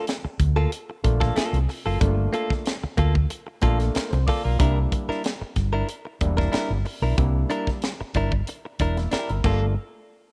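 Funk at 93 BPM in G dorian, driving and cool, moving from a rootless Gm9 to a rootless C9 at 4.6 s. A round, punchy fingered bass sits up front with a tight drum kit and its high-tuned snare, while a bright, twangy direct-recorded clean guitar with a warbly pitch drift plays accompaniment and an overdriven auto-wah clav adds stringy stabs, including a fill at 3.3 s. The sound is a dry, rough home demo mix with a rolled-off top end, cut from a longer piece.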